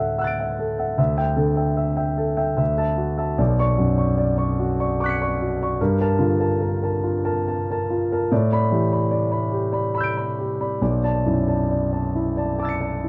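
A concert grand piano, up front with an open tone and deep bass reaching from B1 to D7, carries this short, serene impressionist solo cut from a longer piece. At 73 BPM in a rubato 3/4 with uneven beats, it drifts through hazy extended harmonies such as Dadd9, Bmadd9, Gm9, A9sus4 and finally Bm11 at 10.8 seconds. Light reverb and a dark, warm production lend the 13-second fragment a softly clouded glow.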